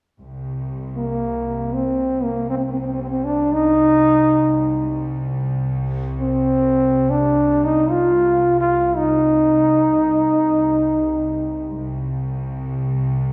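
Melancholic and longing, this Turkish piece sets a solo trombone up front, carrying the melody from 1.0 seconds with light vibrato, soft attacks and scooped notes in a smooth, jazz-inflected voice. Beneath it, a lush bowed cello section holds a low, focused drone from 0.2 to 13.3 seconds. A wet recital-hall reverb places the listener further back in the room, and the recording is cut from a longer performance.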